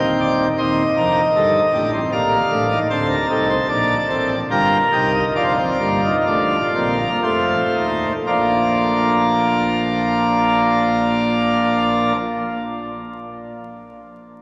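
A pipe organ on full plenum carries this brief baroque-style fugue alone, its mixtures giving a brilliant, full sound with audible chiff on the pipe attacks and a baroque voicing, placed up front in the mix. Set in Bb major in 3/4 at roughly 55-78 BPM with a straight feel, the music is lively yet stately, spanning from a deep Eb1 up to A5 as four voices weave together. The tempo slows from 1.7 to 8.3 seconds, easing through a progression that moves from Eb and Cm/Eb to Bb, then through Gm and Bb/F to an F7 that resolves onto Bb at 8.3 seconds, where a new section begins. A long, wet cathedral reverb hangs around every chord, and a layer of vinyl crackle lends the recording an aged patina. The clip is cut from a longer piece and closes at 12.2 seconds.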